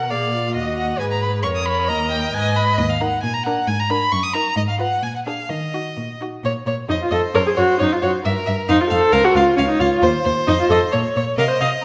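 A smooth, even first violin sits up front, carrying the melody with vibrato over a focused second violin line in this urgent, restless classical-period string quartet movement at 134 BPM in 2/4, played with rubato. The viola's expressive accompaniment, with portamento, is the most prominent of the lower parts, while a rich cello holds the bass with similar portamento and vibrato. The music begins in Eb minor and moves to Bb minor at 6.4 seconds, all set in the moderate reverb of a scoring stage, cut from a longer piece.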